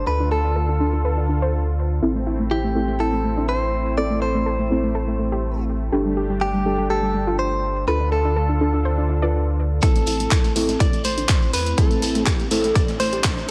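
Progressive house with a bittersweet, emotional pull, this short cut from a longer piece opens on a bright, clean electric guitar melody drifting through dub echo over a smooth, warbling vintage pad and deep, mellow chord stabs, all breathing with sidechain pumping. A saturated sub bass sits thick and up front, while a soft, round pluck spins arpeggios under a filter sweep, its chorus and echo giving the harmony of Dm, Am and Gsus2 a hazy glow. At 9.8 seconds the drums arrive: a punchy, tape-toned electronic kick, joined by house handclaps and hats dulled by low-pass filtering, a gritty, very quiet sampler-style kit with a high-tuned snare, and a grainy, distant shekere. A pure FM bell enters at the same point with a phased second line in the background, and a faint electronic riser from 11.6 seconds pushes the build-up onward. Light digital ambience wraps the mix.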